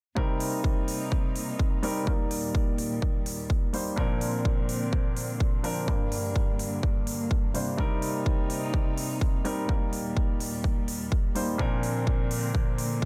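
A punchy, up-front electronic kick drives a straight pulse, joined at 0.4 seconds by crisp, overdriven electronic hi-hats in this anthemic, powerful slice of festival progressive house, cut from a longer piece. A dark, mellow grand piano carries the accompaniment up front, its long sustain and audible action noise threaded through a digital delay and pumped by sidechain compression. Beneath it, a close, intimate studio string section holds soft-attack bowed chords played sul tasto with light vibrato, also breathing with the sidechain. The harmony cycles through Cm7, Eb, Bbadd9 and Gm before returning to Cm7, and the whole passage runs as one section until 13.1 seconds. A small room ambience gives the mix a snug sense of space.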